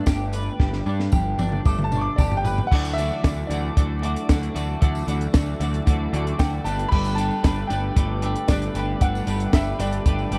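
A straight 4/4 pulse at 114 BPM drives this wistful, carefree indie rock excerpt in D major, moving from Gadd9 to Dadd9 and back. A compact cocktail drum kit sits up front with a dark, smooth, rolled-off sound, a high-tuned snare and a tight kick, using crash, hi-hat, kick, snare and toms and playing a fill from 0.6 to 2.7 seconds. A jingly, close and dry tambourine stays in the background, while a punchy, fuzz-overdriven picked bass, bright and up front, anchors the low end. A double-tracked twelve-string electric guitar plays a clean, compressed, bright riff, and a woody, natural upright piano carries the melody through analog delay, with a piano solo in the opening section. At 2.7 seconds a very quiet, mellow tonewheel organ enters with soft, flute-like sustained chords, key click and a slow rotary speaker, all set against a wash of vinyl crackle.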